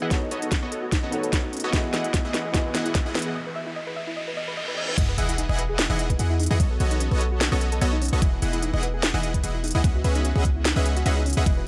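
Lush and playful, this future bass excerpt moves at 148 BPM in E major with a half-time, lightly swung feel, opening on a build-up where a felt-muted upright piano with audible action noise plays soft accompaniment until 3.4 s, beneath an ethereal, wave-folded pad, a round, dark pluck arpeggio under a filter sweep, and a bright, detuned supersaw stab riff, all pumping to the sidechain. From the opening moments, a boomy, sine-based 808-style bass and an overdriven, knocking electronic kick sit up front with a tape-warm trap kit of sharp snare, crisp hats and crash, while a riser, reverse cymbal and sub drop lead through a brief break into the drop at 5.0 s. Chords drift from B9 through Emaj7 to C#m11, and dub echo trails the piano, pluck and stab inside a light digital ambience.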